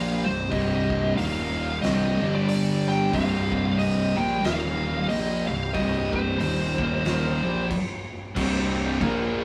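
Stoner and doom metal at 92 BPM in C minor with a swung 4/4 feel, ominous and hypnotic and cut from a longer piece: two thick fuzz guitars grind out a low riff in the background beside a growly fuzz bass and a gritty overdriven tonewheel organ holding sustained chords through a slow rotary speaker, while an oversized low-tuned drum kit with a fat snare, punchy kick and dark cymbals pumps in a stone room, and an up-front, compressed fuzz lead guitar carries the melody until a stop at 7.7 s, after which a bright, double-tracked overdriven guitar riff enters at 8.3 s.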